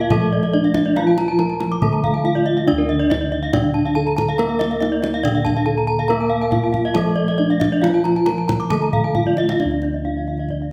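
Shimmering and hypnotic, this short Balinese gamelan passage in D pelog moves at 140 BPM in a straight 4/4. A mellow, padded-mallet bronze metallophone carries the melody, a dark, smooth metallophone plays the lower accompaniment until 9.6 seconds, and two bright, horn-struck metallophones spin arpeggios above, one of them airy; their paired tuning gives the ensemble its beating shimmer. Round, vintage-sounding bossed gongs hold the bass while a tight, hard-handed kendang drives the rhythm and plays a fill from 9.2 seconds, all set in a moderate recital-hall reverb.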